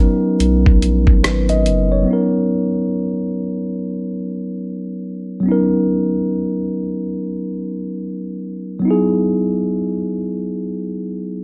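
A relaxed 71 BPM groove in 4/4 swings its sixteenths, setting a nostalgic, cosy lo-fi hip hop mood in B major, tuned slightly sharp to A4 = 444 Hz. A mellow, clean tine electric piano carries the harmony throughout, sitting up front and softened by a low-pass filter as it moves from Bmaj9 to Emaj9 at 8.8 s. At 0.4 s a gritty, compressed sampler-style drum kit joins with hi-hat, a thumpy kick and rim click, together with a deep, thick, saturated sine sub bass whose fast attack gives way to sustained low notes. A barely audible finger snap with a short room sound flickers in alongside them. The drums fall away at 1.9 s and the bass at 2.1 s, leaving the electric piano to play alone for the rest of this fragment from a longer piece. A moderate studio reverb adds a gentle sense of space around the up-front sound.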